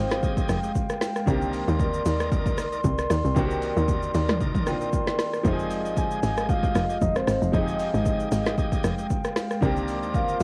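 A tight, punchy log drum bass sits up front in this soulful, deep amapiano excerpt, its percussive FM tone carrying a noise layer and a fast attack before it decays. Beside it, an electronic deep house kit enters at 0.1 seconds with a layered, punchy kick, woody snare, dark hats, rim click, shaker and toms, all swung on the sixteenths at 115 BPM in 4/4. A bright concert grand piano adds brilliant, present accompaniment with short sustain. A glass harmonica holds glassy, ethereal chords with a slow attack and gentle beating, and a lightly overdriven tonewheel organ shouts short stabs through a fast rotary speaker and analog delay. A round, triangle-and-sine octave-layered synth lead carries the melody, dropping out at 1.0 seconds and returning at 6.0, its dark tone thickened by chorus and delay. The harmony in F dorian moves between Fm9 and Cm9, and the whole take has the softened grain of a home cassette recording with light reverb.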